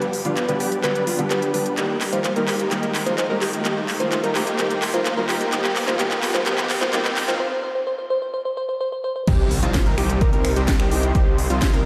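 Opening at once with a very quiet, lush sawtooth pad, a bold unison lead playing arpeggios, a punchy supersaw stab riff under a filter sweep and tape echo, and a house drum kit with a cracking snare, crisp hats, handclaps, finger snaps and a drum fill, this emotional, powerful festival progressive house build-up in C minor at 128 BPM gathers a background riser, a dark grand piano and a sparkling, bell-like FM electric piano melody over G, Eb and Fm chords, pauses for a brief break at 7.4 seconds, then drops at 9.3 seconds onto C minor with a thick, chorused saw bass, an overdriven, hard-hitting electronic kick and an impact, the mix soaked in dreamy hall reverb.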